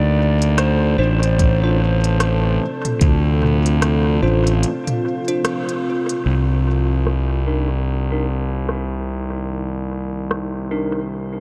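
A growly, punchy fuzz bass sits up front in this deep, meditative ambient dub excerpt with a lazy swung feel, while a dark, detuned sawtooth pad holds sustained chords in the background. A dusky slide guitar with dub echo plays a short melody until 5.4 seconds, as bell-like electric piano stabs with chorus and echo drift behind it. Smooth, filtered hats, rim clicks and toms with dub echo are joined briefly early on by a deep, tape-toned electronic kick, and after a break the drums take on a filter sweep from 6.3 seconds as Dm7 gives way to Cm9, all in a dreamy mix soaked in long, huge reverb.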